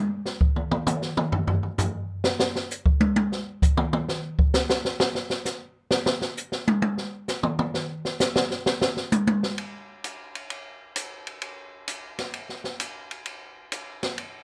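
Closely miked and detailed with a light reverb, this cool, hypnotic jazz fragment at 131 BPM in swung 4/4 features an open acoustic drum kit up front, its dark cymbals, high-tuned snare, boomy kick, hi-hat, ride and toms heard solo from 0.3 seconds, the drum solo running until 9.6 seconds before a new section carries through to 14.3 seconds.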